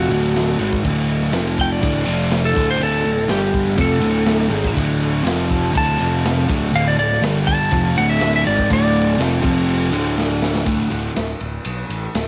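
Garage rock with a rowdy, swaggering strut, cut from a longer piece and sounding like a home cassette recording with a light touch of small-room reverb and a rolled-off top. A clean, compressed lap steel guitar plays a slide solo melody with volume swells until 9.2 seconds, over a double-tracked, up-front fuzz guitar riff and a dark, round, punchy overdriven bass. A gritty, saturated breakbeat kit with dark cymbals and a tight kick drives it along, hitting a drum fill at 10.2 seconds before a new section begins.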